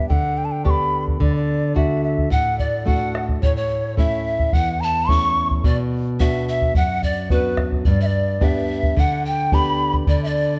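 Close, detailed microphones and a touch of light reverb give this short excerpt of festive, earthy Andean folk an intimate, present sound, with a round, compressed bombo sitting a little louder than the rest in a straight 2/4 pulse. A hollow, airy large quena carries the tongued melody with vibrato over up-front, fingerpicked nylon-string guitar moving through G, D, A and B minor, while a breathy bamboo pan flute with audible chiff enters at 2.3 seconds as a softer second line in the same register. The passage cycles back to G at 7.9 seconds before the chords drop out at 10.1 seconds.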